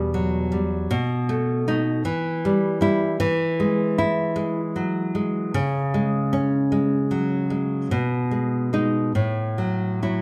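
Set in a large studio with moderate reverb and captured live in one room, this short cut from a longer romantic piece features a solo nylon-string guitar, bright, fingerpicked and up front, spanning E2 to E4. The playing is rubato in 6/8 at a slow 51 BPM, opening melancholically over Em and B7 before turning passionately to E major at 3.2 s. From there it moves through C#5, G#m/B and F#m7/A, closing on F#m7/A at 9.2 s.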